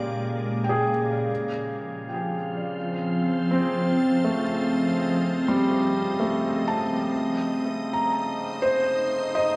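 A soft, organ-like pad of pure, detuned tones with ensemble chorus and its own reverb sustains chords up front alongside felt-muted upright piano arpeggios, intimate and tinged with audible action noise under a diffuse delay, while a reedy, breathing hand-pumped harmonium drones on Db3 in the background, all moving through Bb7, F7 and Cm7 in this serene, slow ambient excerpt at 62 BPM in 3/4, set in a wet concert hall reverb with a dark, warm production.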